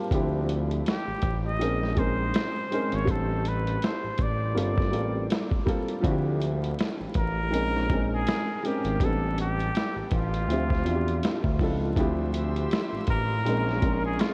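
Hazy and nostalgic, this lo-fi hip hop excerpt moves at 81 BPM in 4/4 with a lazy 16th-note swing, settled in D minor. A felt-muted upright piano carries the accompaniment with a soft, mellow tone, short sustain and audible action noise, colored by cassette tape and a low-pass filter. Beneath it, a smooth synth bass sits up front, its detuned, nasal sawtooth-and-square character sustained with a touch of vibrato. The sampler-style drum kit is compressed, pitched down and muffled, with a thumpy kick and medium-tuned snare alongside hi-hat, as if re-recorded in a large room. From 0.9 seconds a trumpet with a straight mute takes the melody, close-miked, breathy and whispered in a jazz style, and at 12.0 seconds a studio string section enters in the background with gut-string, reedy sustained chords. Chords drift through Dm11, Bbm11, Am7 and Gm11, and the whole dreamy mix is soaked in long ambient reverb with vinyl crackle.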